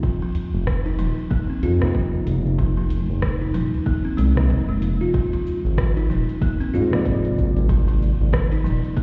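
A buzzing, woody kalimba plays airy arpeggios over a worn, slightly out-of-tune tine electric piano with tremolo, delay, sidechain pumping and a filter sweep, alongside an overdriven electronic kick and a tape-toned afro-pop kit of metallic hats, rim click and shaker, while a deep udu sits in the background and a smooth, portamento sawtooth synth bass enters up front at 0.5 seconds, all in a hypnotic, swung organic downtempo groove at 94 BPM that moves from F7 to Ab at 5.1 seconds, heard muffled as if through a wall with stone room reverb in this fragment of a longer piece.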